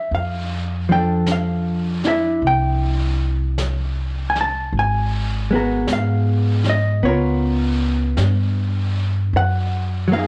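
Worn, warbling old-tape sound with light reverb wraps this tender, intimate swung jazz ballad fragment, where a dark, clean, compressed hollow-body electric guitar plays a picked accompaniment up front beside a woody, thumpy pizzicato gut-string upright bass, while a brushed kit with a rolled-off top keeps soft time on snare and hi-hat as the harmony drifts from Fmaj13 through Abm9 and Db6 to Gb6.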